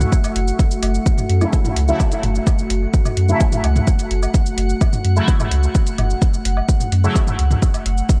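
An overdriven, deep electronic kick sits up front alongside a clean, smooth sine sub bass, both driving this cavernous, hazy dub techno fragment held on a single F#m7 chord, with a dark, detuned analog pad pumping beneath them under chorus. Metallic electronic hats and shaker tick throughout, while overdriven toms and woodblock sit in the background with dub echo and sidechain pumping. From 1.4 to 7.2 seconds a juicy, detuned sawtooth polysynth adds filter-swept stabs through chorus, phaser and dub echo, as a glassy texture of drifting overtones hovers faintly behind.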